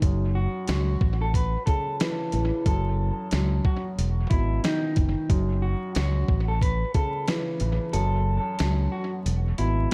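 Boom-bap hip-hop at 91 BPM in F# dorian, this dark, moody cut from a longer piece swings its 16ths over a dusty, gritty, compressed sampler-style kit that sits up front with a thumpy kick, fat snare and hi-hat, re-recorded in a large room, alongside a round, direct fingered electric bass. A mellow, woody upright piano with long sustain comps low under filtering and tape echo, while from 0.4 seconds a slightly broken-up electric guitar plays the melody through the same filtered, echoing treatment. The dry, echo-heavy mix carries vinyl crackle, and the kick drops out from 7.9 seconds as the progression moves from F#m to E.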